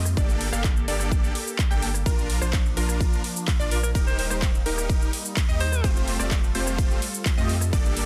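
Festival progressive house at 127 BPM in a straight 4/4, this euphoric, triumphant passage is cut from a longer piece and moves through Gmadd9, Bb, Eb and Fadd9. A punchy, overdriven electronic kick sits up front, joined by a big-room kit of handclaps, metallic hi-hats, ride cymbal, rim click and shaker, also driven into overdrive. Underneath, a deep, thick saturated sub bass holds the low end while a huge, detuned supersaw riff with a sub octave carries the harmony, pumping against the kick and trailed by digital delay. In the background, an airy unison pad with slow attack breathes through chorus and phaser, and a wave-folded sawtooth pluck arpeggiates high up with a filter sweep, cassette tape colour and delay echoes. A bright alto saxophone steps in as a solo between 3.7 and 5.9 seconds, a short pop-style phrase with vibrato set in digital ambience. The master is dense and heavily limited, giving the whole mix a modern sheen.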